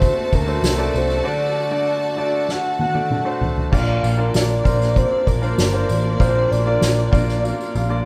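A soft, octave-layered synth lead with chorus and vibrato carries the melody in this bittersweet, dramatic piano-driven pop excerpt in G minor at 97 BPM. A clear concert grand piano with audible action noise accompanies it, a lush bowed violin section adds a second line, and an up-front, foam-muted picked electric bass anchors the low end. A distant soft-mallet drum kit with a fat snare and dark cymbals, plus a jingly tambourine in the background, sits in a moderate stone room; a break runs from 1.3 to 3.7 seconds, with a drum fill starting at 2.5 seconds.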